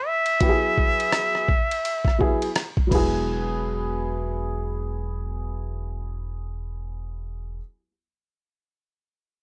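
Light reverb gives this smooth hip hop and jazz-hop fragment a soft sense of space, set at 84 BPM in E major with a swung sixteenth-note lilt. A breathy, nasal trumpet with a straight mute and vibrato sings the melody up front from the start, over a gritty, pitched-down boom bap kit of thumpy kick, hi-hat, ride, crash and rim click that drops out at 3.1 seconds. A worn, slightly detuned upright piano carries the accompaniment from 0.4 seconds to the end, and a woody pizzicato upright bass enters at 2.9 seconds and plays with it to the end.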